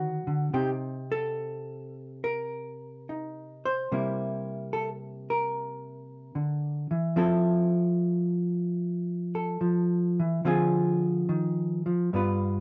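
The rhythm sways loosely, with swung eighth notes, uneven beats and a rubato feel that lets the time stretch and breathe. This is a short passage of solo jazz cut from a longer piece, and its mood is swinging yet moody. A single hollow-body electric jazz guitar carries everything, fingered and clean, sitting up front with a dark tone that spans from its low register up into the middle of its range. The harmony moves from Cm7 through C7 to Fmaj7 and then Dm7b5 near 10.4 seconds, after a brief Daug7 at the very start. Light reverb surrounds the guitar, and the warm, dark production keeps the top end rounded and soft.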